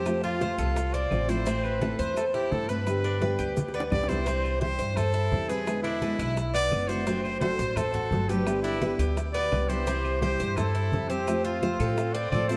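A bright, close-miked trumpet leads this danceable Cuban son and guajira excerpt up front, carrying the melody at 171 BPM in a straight 4/4 in C major, over a dark, full-bodied nylon-string guitar played with the thumb and a metallic, picked tres spinning arpeggios on its doubled strings. Beneath them a woody, thumpy pizzicato upright bass anchors the low end, while soft-handed percussion enters at 0.1 seconds: low-tuned congas with a thick skin and grainy, mellow maracas sitting in the background, along with tight high-tuned bongos and vintage band-limited claves, both kept very quiet. A drum fill at 3.6 seconds leads into a repeat of the opening section, where the harmony moves through C, E7, D7/F#, G and back to C before landing on F. At 9.3 seconds a breathy silver concert flute joins in the background with a second line, its crisp attack and unsteady vibrato adding a touch of air. A wet plate reverb places the ensemble further back in the room, giving the whole groove a warm, roomy glow.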